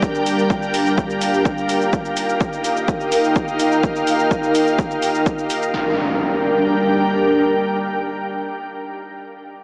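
A punchy, up-front electronic kick and metallic, pumping shaker and hi-hat drive a straight 4/4 pulse at 126 BPM in this hypnotic melodic techno excerpt in G minor, the kick dropping out at about 5.4 seconds and the shaker and hi-hat at 5.7 seconds as an electronic impact lands. Beneath them, a deep, moody analog pad of detuned sawtooth and sub octave holds sustained chords moving from Gm to Ebadd9 and back, its chorus-thickened tone breathing with sidechain pumping. An ethereal, airy pad in ensemble chorus floats above it throughout, all set in a huge ambient reverb with a small-speaker character.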